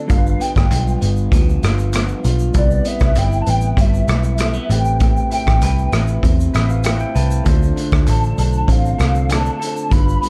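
The recording is dark and warm, with little reverb, and it plays as a short excerpt cut from a longer indie and bedroom pop piece in a wistful, mellow mood. A warbling, detuned lead built from square and sawtooth tones carries the melody with a fast attack and long sustain, colored by ensemble chorus and tape echo for a nostalgic, vintage cast. Beneath it, an electric guitar through a small old amp sounds slightly broken-up and compressed, with subtle chorus and vibrato, while an overdriven tine electric piano adds a bright, barky grit through a combo amp and steps forward with a fill from 6.2 to 7.5 seconds. The foam-muted picked bass is round and punchy, and the raw garage drum kit of hi-hat, kick, rim click and shaker sits up front with a boomy kick, a pumping small room and a rolled-off top. A crisp, band-limited group handclap enters at 0.7 seconds, very quiet in the mix, as the harmony moves from G7 through Cmaj7 and Am9 to Dm7.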